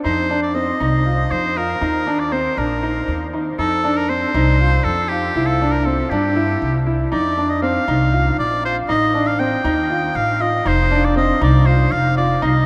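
An oboe and a concert grand piano begin together, the oboe carrying a clear, classical-style solo melody with light vibrato while the piano plays open arpeggios in the middle register. A pizzicato upright bass joins at 0.1 seconds, its gut strings giving a woody, thumpy low end. This contemporary chamber piece moves in a straight 7/8 at 238 BPM counted in eighths, and its mood is restless and shimmering. The harmony in F mixolydian repeatedly returns to F between passing chords such as Eb, C and a tense A7(b5) shape. Oboe, piano and bass sit up front, surrounded by a huge, wet ambient reverb that places them in a vast, echoing space. The passage runs to 12.7 seconds and is cut from a longer piece.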